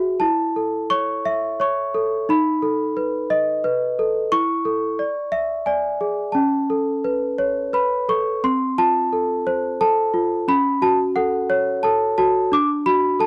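In a three-beat metre at 88 BPM with a straight feel, this short fragment of children's music has an innocent, gentle mood. A single celesta carries the whole passage from 0.0 to 13.3 seconds, ranging from C4 up to D6 with a bell-like, delicate and sweet tone from its hard felt hammers, placed up front in the sound. The opening harmony moves through A, B7, A/E and E7 before settling on Aadd9. At 8.4 seconds a second section begins on F, then passes through A6 and arrives on D. The recording has a dry, close 1970s-style studio character, with a small room reverb giving the celesta a touch of space.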